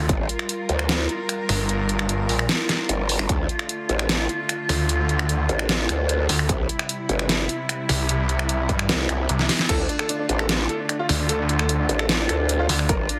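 Set in 4/4 at 150 BPM with a half-time feel, this chaotic, menacing stretch of heavy wobble dubstep in D minor is cut from a longer piece. An overdriven, punchy electronic kick lands in brief hits, then holds a longer run from 6.5 s, while a layered dubstep kit of deep snare, hi-hat, finger snaps and crash cymbal sits up front with its own grit and a drum fill at 9.4 s. Two aggressive basses dominate the low end: a snarling sawtooth bass, distorted, detuned and carved by a moving notch, and a wobbling growl bass shaped by a formant filter, saturated and bright with chorus. Behind them a distant, smooth symphonic string section holds sustained chords that pump against the sidechain, moving through Gm7, Dm and C before returning to Dm. At 9.7 s a clear concert grand piano enters with a melody between D4 and Bb4, its long sustain trailed by tape echo. The whole mix is heavily squeezed into a loud, radio-style sound with light reverb.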